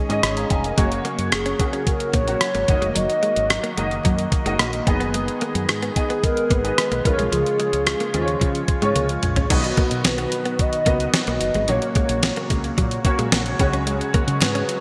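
Uplifting and nostalgic, this 1980s-style pop piece sets a hollow, clarinet-like synth lead with chorus and digital delay over a clear concert grand piano, a brassy analog pad in the background, a round fretless electric bass, an up-front 12-bit drum machine with a thumpy kick, fat snare and gated reverb, a compressed clean electric guitar riff tucked behind, and a barely audible group handclap at 14.4 seconds, all under a bright digital sheen and plate reverb.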